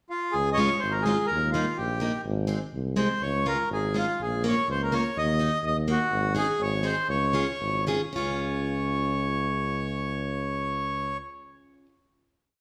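This short alpine folk piece for an alpine dance band is jolly and festive, moving in 2/4 between 105 and 127 BPM with a rubato feel in Db major. The reedy, airy accordion leads from 0.1 seconds with a motif-based melody built from period phrases, sitting up front with a full, dry-tuned sound. The tuba enters at 0.3 seconds, warm and up front in a classical style, playing root and fifth on the main beats. A picked, plugged-in steel-string acoustic guitar adds a boxy parlour tone, filling the off-beats with triad chords. After a brief pickup, the harmony moves through Db, Eb, Ab, Bbm and Ebm before a suspended Ab resolves home as the tempo slows from 6.1 seconds, ending on a held final chord. A moderate recital hall reverb gives the small ensemble a sense of space.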